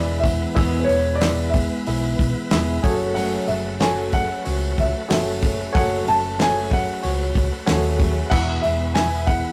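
Jangly and nostalgic, this short folk rock and heartland rock clip moves at 93 BPM in a straight 4/4, with a baby grand piano carrying the melody over chords that shift from E to F#madd9 at 2.8 seconds and back to E at 8.3 seconds. A reedy, barky electric piano with fast tremolo and a picked dreadnought steel-string acoustic with fresh strings fill out the accompaniment, while a shouting tonewheel organ holds sustained chords through a slow rotary speaker, light overdrive and chorus vibrato, complete with key click. Underneath, a round, punchy hollow-body bass and an up-front, damped 70s drum kit with a fat snare and tight kick anchor the groove, a very quiet tambourine jingles in the background, and the whole take has the rough, saturated feel of a rehearsal room with moderate reverb.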